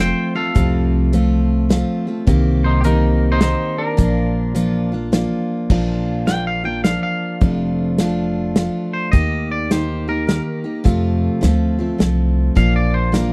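A twangy electric guitar carries the melody and then takes a clean solo from 5.7 seconds in this heartfelt, easygoing honky-tonk country waltz with a swung lilt, backed by a full-bodied jumbo steel-string acoustic guitar picked up front with audible finger squeak, a woody pizzicato upright bass, and a natural drum kit with punchy kick, medium-tuned snare, hi-hat and crash that enters at 0.6 seconds, all captured in a dry, close 1970s-style studio sound cut from a longer piece.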